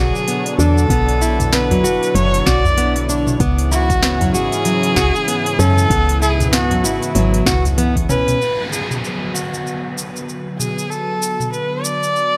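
A clear, bowed kamancheh sings up front with vibrato and portamento through digital delay in this meditative, warm organic downtempo excerpt at 96 BPM in B dorian, over a warbling, detuned analog pad with chorus and sidechain pumping, fingerpicked nylon-string guitar arpeggios with finger squeak and tape echo, a round, dark FM bass, a tape-toned afro-pop kit of sharp snare, smooth hats, cabasa and toms joined by a deep electronic kick in the background and a very quiet, dry udu, until a drum fill at 7.5 s hands off to a brief section at 8.4 s where the guitar and bass drop out and an electronic downlifter appears.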